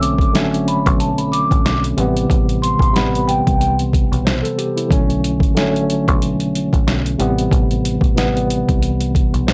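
A swung, head-nodding boom-bap groove drives this gritty, tough hip-hop cut, built on a compressed, pitched-down sampler drum kit with a thumpy kick, medium-tuned snare and hi-hat sitting up front. Underneath, a dark, round, foam-muted fingered electric bass holds the low end while a clean tine electric piano, filtered and tinged with cassette grit, comps through Bm9 and Am9 chords. A mellow, metallic vibraphone with soft mallets and slow motor vibrato rings out a high melody in a boxy small room before dropping out at 3.8 seconds, and the whole passage keeps a dry, hardware-recorded feel.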